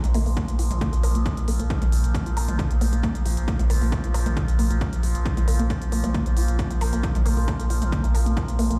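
Heard through a big sound system in a bare room with a large studio reverb, this driving, relentless peak-time techno excerpt rides on a punchy, tape-warm electronic kick and smooth, pumping hi-hats and toms, a deep, thick saturated sub bass under a low-pass filter, a slowly swelling sawtooth-and-sine drone with moving overtones, chorus and its own reverb, and a juicy, squelchy resonant blip pluck riff soaked in phaser, analog chorus and dub echo, while a filter sweep runs across the synth arpeggio sound throughout.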